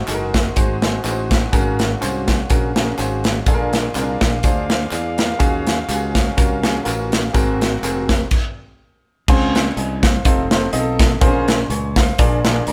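A clear, up-front grand piano and a muted French horn section open this soulful, hopeful uptempo gospel excerpt at 124 BPM in 4/4 with a light swing, the piano carrying the accompaniment while the distant, nasal horns hold sustained chords in the background. A modern studio drum kit with a punchy kick and medium-tuned snare joins almost at once, sitting up front with crash cymbal and hi-hat, alongside a bright, growly fingered electric bass and a compressed, saturated layer of group handclaps, tambourine and tube shaker tucked behind. The harmony moves through rich extended chords such as Ab9sus4 and Ebm11 before the horns and percussion drop out around 8.3 seconds and a brief stop follows. Piano, bass and drums return at 9.3 seconds with a new passage built on Dbmaj7, F7 and Bbm9, and the piano closes with a short fill. Light reverb gives the feel of a band playing live together in one room.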